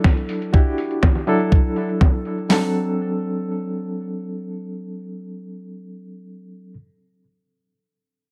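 A straight 4/4 groove drives this feel-good, groovy nu-disco excerpt: a clean 12-bit drum machine gives a thumpy kick, medium-tuned snare and hi-hat. It is layered with a dusty, compressed soul sampler kit whose gritty, fat snare and hats sit behind a low-pass filter, while a filter sweep runs over the drums until both kits stop by 2.6 seconds. Up front, a barky, reedy electric piano with light overdrive, fast tremolo, sidechain pumping and delay plays accompaniment over Em9 moving to D7, continuing alone to 6.8 seconds in a dry mix with little reverb.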